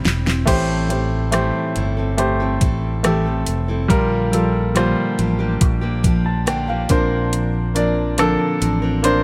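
A short drum fill marks the first half-second of this tender, emotional pop ballad, setting a slow, straight 70 BPM pulse in 4/4 before the harmony settles in at 0.5 seconds. The smooth R&B kit sounds electronic and produced, with a knocking kick, fat snare, metallic hi-hat, rim click and crash cymbal placed up front. A grand piano carries the accompaniment with a polished, present tone and short sustain, while a picked steel-string acoustic guitar plays full-bodied jumbo arpeggios colored by tape echo. Underneath, a fingered electric bass sits dark, round and direct in the low register. The chords move from Am7 to Gm7 at 3.9 seconds and Bbadd9 at 6.9 seconds, all within a light reverb in this brief cut from a longer piece.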